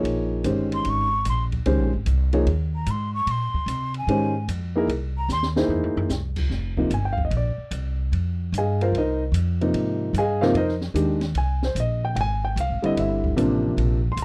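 Spiritual and cool, this modal jazz passage swings in 4/4 at 148 BPM, moving from Bb dorian over a Bbm11 and C7alt to F dorian at 6.5 s with Fm11 and Gm11 chords. A breathy, hollow flute with vibrato carries the melody from 0.7 to 5.5 s, over up-front grand piano accompaniment with deep bass and short sustain and a woody, thumpy pizzicato upright bass. An acoustic drum kit with dark cymbals, a high-tuned snare and a boomy kick plays a fill from 5.3 to 6.1 s, all captured in a dry, close 1970s-style studio sound.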